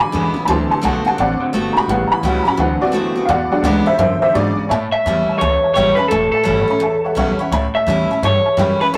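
Upbeat and rowdy, this rockabilly fragment swings at 170 BPM in A mixolydian, with a detuned, jangly honky-tonk upright piano soloing for the first 4.7 seconds over D7, A7 and E7 changes. A full-bodied steel-string acoustic guitar with audible finger squeak and a woody, thumpy pizzicato upright bass on gut strings play throughout, while a twangy, slightly broken-up electric guitar through a small old amp plays a riff until 4.7 seconds, and a second such guitar carries the melody with tape echo from 4.9 seconds. The rough rehearsal-room recording has tube saturation and a moderate small-room reverb.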